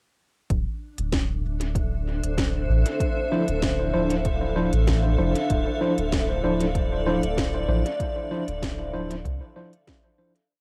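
Lightly reverberant and recorded on cassette, this hazy, spacious ambient dub piece opens on a round, deep sub bass carrying a dub-style line, a punchy yet soft electronic kick, and a sparse, echoing kit of crisp closed hats and a woody, overdriven snare. A cloudy, detuned granular pad drifts in at 1.4 s with slowly shifting, blurred chords, and at 3.3 s a clean tine electric piano sits up front with off-beat chord stabs thrown into dub echo. From 7.2 s the whole piece fades out.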